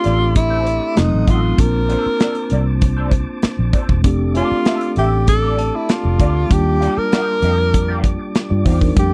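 A breathy tenor saxophone leads this lush, romantic 1970s-style soul excerpt in a straight 4/4, singing the up-front solo melody with soft attacks, scooped notes and a jazz-style vibrato. Beneath it, a mellow tine electric piano plays clean accompaniment through its built-in speakers, while a clear tonewheel organ holds sustained chords in the background through a slow rotary speaker. An electric guitar through a small old amp adds a twangy, slightly broken-up picked riff colored by wah and analog chorus, and a polished modern drum kit sits up front with a tight kick, medium-tuned snare and hi-hat in an airy small room. A dark, foam-muted fingered bass enters at 0.1 seconds, round and punchy, and a very quiet glockenspiel with soft plastic mallets rings bell-like touches at the opening and again around 5.6 seconds. The harmony moves through F6, F7b9 and Bbmaj9, returns to F6 and then reaches Ebmaj9, all captured in a dry, close studio sound with little reverb.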